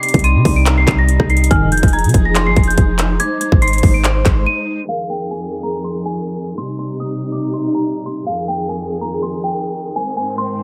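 Eerie and menacing, this half-time trap excerpt at 142 BPM in F dorian sets a delicate celesta melody with digital delay over lush, woody bowed strings, while an inharmonic detuned synth bell sits in the background, a hard-clipped, overdriven drum kit with metallic hats and a deep, boomy 808 bass drive the opening until a break at 4.5 seconds, and a round, brassy synth stab flashes at 1.5 seconds, all kept dry and low-passed as the strings and celesta carry on alone to the end.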